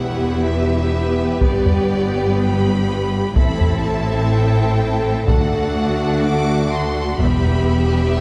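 A dark, warm scoring-stage sound frames this epic, relentless film-score excerpt in E minor at 125 BPM, moving through Em, G, Am and D. A clear, intense chamber violin section carries the vibrato-rich melody over a distant symphonic violin second line, a smooth, very quiet viola accompaniment and even sustained chords from the string section and a warm French horn section in the background. Rich, lush cellos and expressive double basses anchor the bass, while a taiko ensemble pounds with heavy sticks from 1.4 to 7.7 seconds.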